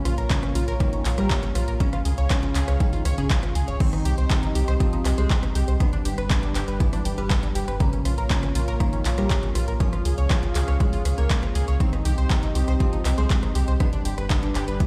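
An overdriven, punchy electronic kick sits up front from 0.3 seconds, anchoring this melancholic, dark stretch of melodic techno at 120 BPM in 4/4, cut from a longer piece in C phrygian. Beside it, a round, deep analog bass with a sawtooth edge pumps against the kick, while a tape-warm analog drum machine adds crash cymbal, handclaps, hi-hat and rim click. A tight, nasal sequenced synth drives arpeggios through chorus and digital delay, over a moody, detuned analog pad that holds sustained chords with a slow attack. In the background, a soft octave-layered lead carries the melody with vibrato, and a glassy, crystalline wavetable pluck with ring modulation and a filter sweep plays a second line an octave lower, both washed in chorus and delay. The harmony cycles Bbm, Db, Cm and G twice, and the whole mix rings out as if played on a big sound system in a bare stone room.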